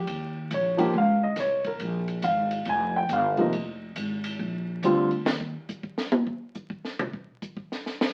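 Relaxed and warm, this brief jazz piano trio fragment swings at 139 BPM in 4/4, with a dark, mellow grand piano carrying the melody over Eb7, Bb5, Fm7 and Bb chords, while a woody, growly pizzicato upright bass holds the low end. A compact cocktail kit plays throughout, dry with a punchy kick, high-tuned snare and dusky cymbals, and takes a drum solo from 5.3 s, once the piano has stopped at 5.1 s, with the bass dropping out shortly after at 5.5 s. Moderate studio reverb and the crackle of a very old 78 rpm record give the up-front trio a vintage sheen.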